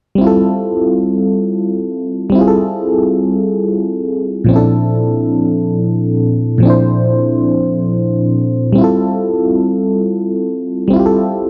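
Tender and intimate, this short slice of a longer R&B piece unfolds in 6/8 with a straight feel. A lone FM electric piano carries everything from 0.2 to 11.5 seconds, ranging from Bb2 up to C5 and sitting up front in the mix. Its tone is mellow and vintage, with a fast attack that then decays, a warbling tremolo, and a faint layer of noise riding beneath the notes. The harmony moves from Fmaj9 to Bbmaj9#11 at 4.5 seconds and settles back on Fmaj9 at 8.8 seconds, giving the passage a lush, unhurried glow. Light reverb and a dark production frame the instrument closely, keeping the atmosphere hushed and personal.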